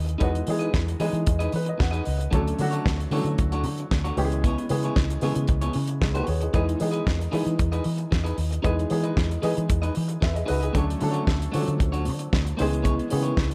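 Celebratory and glamorous, this straight 114 BPM disco cut sets a dark, mellow baby grand piano with audible action noise and a brief fill at 1.3 seconds against a slightly broken-up picked electric guitar, a round, foam-muted fingered bass, and an up-front, dry 70s drum kit with a fat snare and tight kick, moving through Emaj7, Dmaj7 and C#m7 in light small-room reverb.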